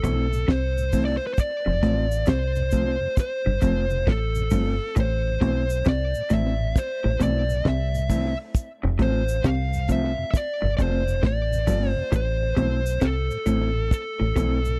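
Meditative and laid-back, this roots reggae excerpt in A minor moves at 67 BPM with a swung 16th feel, as a dark, compressed fuzz lead guitar with tape echo carries the melody over a clean, fingered electric guitar bathed in spring reverb, a soft, flute-like tonewheel organ with chorus vibrato in the background, a slightly broken-up, lo-fi guitar riff with warbly pitch drift, a round, punchy dub bass up front, a damped 70s drum kit with a fat snare and tight kick, and a faint cabasa, all captured in a dry, close 1970s-style studio sound as the chords move between Am and F.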